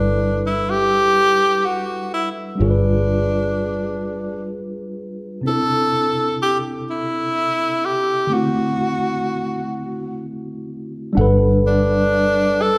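A wet recital-hall reverb wraps this short excerpt, with the sound of a church or concert hall around a slow, sensual R&B groove in 6/8 at 42 BPM in G major. Up front, a breathy tenor saxophone carries the melody between D4 and A4 with a clear, pop-style tone and light vibrato, playing solo over the band. A mellow tine electric piano, clean and sitting close through its built-in speakers, supplies the accompaniment across a broad range from C3 to F#5. Underneath, a fingered electric bass gives a dark, round, foam-muted low end, direct and amped, moving between G1 and C2. The chords pass from G6 through G7b9, C69 and D9, and after a break from 9.7 to 11.2 seconds the music settles onto Gmaj7 as a new section begins, creating an intimate mood.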